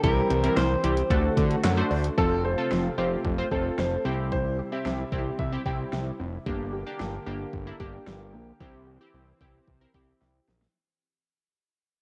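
A steady, straight 4/4 pulse from an electronic pop drum kit drives this nocturnal synth-pop passage, its knocking kick, fat snare, hi-hat and handclaps overdriven and carrying a layer of cassette tape grit. Underneath, a thick detuned sawtooth bass sits up front with a filter sweep, while a funky polysynth comp warbles with chorus and tape character. A lush unison pad holds sustained chords with a slow attack in the background, and a very quiet plucked arpeggio with a moving notch glints through the mix. A picked, compressed clean electric guitar states a brief melody over the first 1.3 seconds, and a clear, smooth grand piano carries a second line from 2.2 to 5.8 seconds, both echoing through analog delay. The harmony moves from C and D into F, C, G minor and back to C as the music begins fading out at 2.2 seconds, closing with a drum fill at 10.2 seconds. A moderate spring reverb and digital ambience frame this homespun cassette recording, cut from a longer piece.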